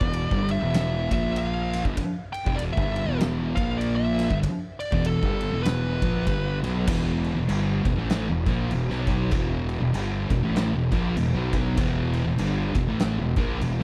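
A dry excerpt of heavy, sludgy stoner and doom metal at 98 BPM with a swung feel in E phrygian, where two thick fuzz guitars churn a picked riff in the background over Em and A#5 chords, a growly, overdriven fingered bass sits up front with tube saturation, an oversized, low-tuned acoustic drum kit pumps gritty and up front in a big room with a boomy kick, fat snare and dark crash and ride cymbals, and a distorted fuzz lead guitar with tape echo carries the melody until 6.6 s.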